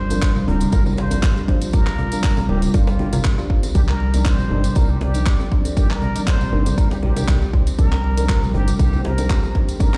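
Driving and spiritual, this afro house excerpt moves at 119 BPM in 4/4 with a gentle swing on the sixteenths, its harmony shifting from Gm7 to Cm7 at 3.8 seconds. An up-front, punchy electronic kick anchors the groove alongside a tape-warm house kit of handclaps, hi-hat and toms, while bright, distant congas, a deep djembe with metal rattles and a jingly vintage tambourine sit back in the mix. A woody, round FM bass carries the low end, and a plucked kalimba rings out arpeggios through tape echo, its thumbnail attack giving a hollow-box character. Behind them, a smooth analog pad holds sustained chords with chorus, and a soft, detuned chord stab adds dark, decaying hits colored by chorus, phaser and tape echo, with the pad, kalimba, bass and stab all pumping against the kick. Drifting in from a distance is a muted trumpet with a plunger mute, breathy and whispered with wah-wah inflections, vibrato and scooped notes in a jazz-style solo melody trailed by tape echo. 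The whole track sounds as if played over a big sound system in a bare stone room, adding a roomy, reverberant sheen.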